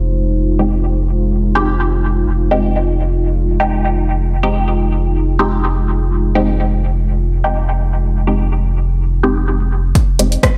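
Resonant, wave-folded dub chord stabs with phaser and dub echo pulse over a dark, detuned pad that pumps to the sidechain and a round sine sub bass holding F1 on Fm7 in this cavernous, hypnotic dub techno excerpt at 125 BPM in F minor, before a punchy overdriven kick drum and a deep house kit of hi-hat and rim click arrive at 10.0 s in a small room.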